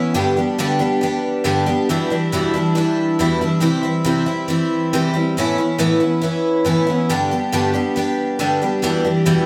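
In a straight 4/4 feel, this nostalgic, warm rock passage features a lone picked twelve-string acoustic guitar, bright and shimmering with its octave-doubled, full-bodied jumbo tone sitting up front in light reverb as it moves through G, Em7, C and Aadd9 before returning to G and Em7 across its 9.5 seconds.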